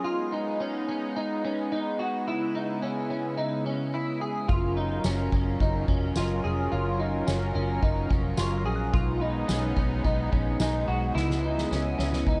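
A softly glowing, lightly reverberant small-room sound opens this dream pop excerpt, floating and ethereal at 108 BPM in F# major. A detuned sawtooth pad with a soft attack holds smooth, chorused chords from the start, while a slightly broken-up electric guitar, compressed and up front, picks arpeggios through ensemble chorus and digital delay. At 4.5 seconds a dark, foam-muted fingered bass with a round tone arrives alongside a distant, roomy drum kit played with soft mallets, its punchy kick, fat snare, ride cymbal and tambourine carrying a rolled-off top. A very quiet, bell-like celesta joins at 5.0 seconds, adding delicate, sweet high notes from soft felt hammers. The harmony moves from B6 and C#m7 to a long F#maj7 before returning, and the drums close with a fill from 11.2 seconds.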